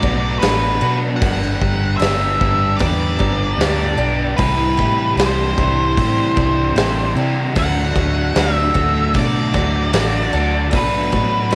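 From the first second a hazy, dreamy shoegaze and dream pop groove at 76 BPM unfolds over Bm7, Gmaj7 and Cadd9, with an octave-fuzz lead guitar carrying the melody above a hollow-body overdriven semi-hollow riff washed in reverse reverb, a dark, chorused thick fuzz guitar and a bright, shimmering twelve-string acoustic playing arpeggios through analog delay in the background, a round, foam-muted fingered electric bass, and a huge arena drum kit with a punchy kick and medium-tuned snare, all steeped in the softened grain of a home cassette recording with light reverb.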